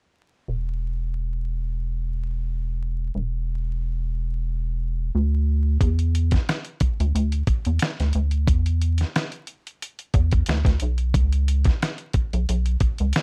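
R&B with a neo-soul lean, this late-night, soulful excerpt moves at 90 BPM in 4/4 with a light swing on the sixteenths, tuned slightly flat of standard pitch. A rubbery square-wave bass opens alone at 0.5 seconds, hollow and bouncy, its wave-folded tone shaped by a resonant filter pluck and a moving notch, holding a dark, sustained low end between E1 and E2. At 5.8 seconds a dusty sampler-style drum kit joins, bringing finger snaps, hi-hat, a thumpy kick and a fat snare with a gritty, compressed character. Both parts sit up front in a dry mix with little reverb, while vinyl crackle lends a worn, crate-dug texture before the cut at 13.2 seconds.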